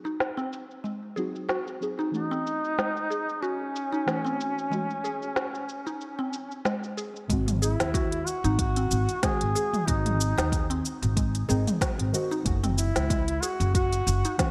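This mystical slice of organic downtempo opens with a dark, wave-folded chord stab, its sound colored by chorus, phaser, delay and sidechain pumping, beside a round, woody FM pluck that spins arpeggios through lush chorus and delay. An organic electronic kit arrives almost at once with a woody snare, smooth filtered hats, shaker and toms, sitting up front in studio and gated reverb over a lightly swung sixteenth-note feel. At 2.1 seconds a mellow duduk takes the solo melody in a vintage folk style, its vibrato and scooped notes carried on a trail of delay. At 7.3 seconds a pizzicato upright bass with a woody, steel-string tone enters alongside a deep, layered electronic kick, the bass pumping against the beat. The harmony moves between G#7 and F#m7 under a moderate plate reverb and a bright 1980s-style digital sheen, and the passage is cut from a longer piece.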